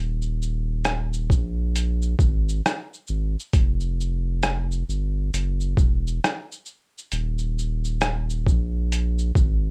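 The recording sounds dry and close, with little reverb around it and both parts placed up front. This short excerpt of lo-fi hip hop moves at a relaxed 67 BPM in 4/4, with a 65% swing on the sixteenths giving it an easy, reflective, nostalgic lean. A saturated sub bass sounds from the very start, deep and thick with a triangle-like tone, a fast attack and sustained notes sitting between Eb1 and Bb1. At 0.2 seconds a boom bap sampler-style drum kit joins with a thumpy kick, hi-hat, rim click and shaker. The kit is compressed and pitched down, carrying vintage 12-bit sampler grit and a tape-warm character, as though re-recorded in a small room.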